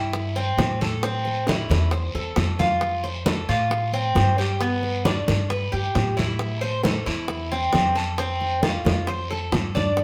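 A live-in-one-room studio sound with moderate reverb frames this relaxed, sunny excerpt of Cuban son and guajira in a straight 4/4. Up front, a metallic, picked Cuban tres with double strings, some of them octave-doubled, plays arpeggios over chords moving from C through Am, F and G, while a woody, dark upright bass with gut strings gives thumpy pizzicato support. Bright, compressed and saturated congas played with soft hands, tight high-tuned bongos heard close and dry, and a raspy, distant guiro in a large room all join within the first 0.2 seconds.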